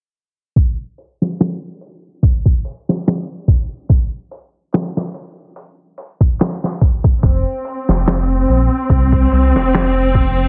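Smoky and dark, this trip hop passage, cut from a longer piece, opens at 0.6 s with a muffled, pitched-down sampler-style drum kit of thumpy kick, medium-tuned snare and hi-hat in a light 16th-note swing, set in a small room under a filter sweep. At 7.2 s a deep, rumbling detuned saw bass and a lush bowed string section with vibrato and a touch of 12-bit grit arrive together on a rootless Bbsus2/F chord. The whole mix carries a heavily compressed, radio-like sound with little reverb.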